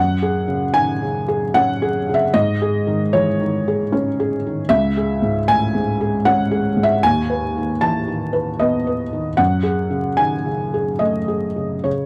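A vinyl crackle and a wet but short studio reverb frame this brief, intimate fragment, lifted from a longer piece. It is neoclassical minimalist piano in a melancholic mood, moving at 76 BPM in 3/4 with a loose, rubato feel, and tuned slightly low to A4 = 439 Hz. A single felt-muted upright piano plays solo from start to finish, spanning C#2 to A5, its soft, mellow tone sitting up front with a short sustain and the natural clatter of its action clearly audible. The harmony drifts from F#sus2 through G#sus4 and C#m to B/D#, before settling on F#madd9 at 9.4 seconds. The close, unadorned sound of the felted hammers gives the playing a private, hushed character, as if heard from beside the instrument.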